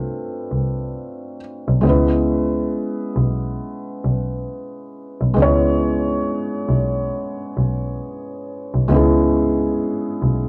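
A felt-muted upright piano sits up front from the start, its thick-felted, mellow tone and audible action noise carrying a cassette-tape patina as it moves from Dm7 to C#m7 at 1.8 seconds. A bowed double bass, played con sordino by one player with vibrato and a soft attack, joins at 0.5 seconds with a dark, veiled voice in the low register. This reflective, melancholic lo-fi hip hop excerpt in C# minor moves at 68 BPM with a swung 16th-note feel, tuned to A4 = 445 Hz, and a moderate studio reverb and worn, warbling old tape with pitch drift colour the whole recording.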